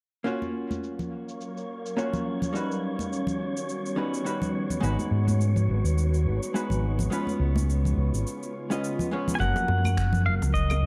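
A clean, compressed hollow-body jazz guitar with tape echo opens this blissful, smooth, swung sunset chillout excerpt, soon joined by close, hard-handed congas and bongos, tape-toned electronic cabasa, claves and finger snaps, an ethereal detuned pad with ensemble chorus and a breathy wind-like noise layer, before a round, punchy fingered bass enters at 4.8 s and, after a short break, a twangy pedal steel with volume swells takes the melody over a deep analog kick at 9.4 s, set in a dark production with light digital ambience.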